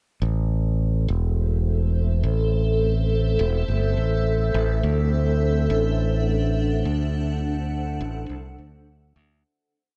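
Deep and meditative, this short ambient dub piece sets a bright, direct fingered electric bass, up front with tube saturation, under a cloudy granular pad that enters at 1.3 seconds with blurred, slowly shifting sustained chords washed in its own reverb, moving from Am to D7 in a lightly reverberant space before fading out from 6.4 seconds.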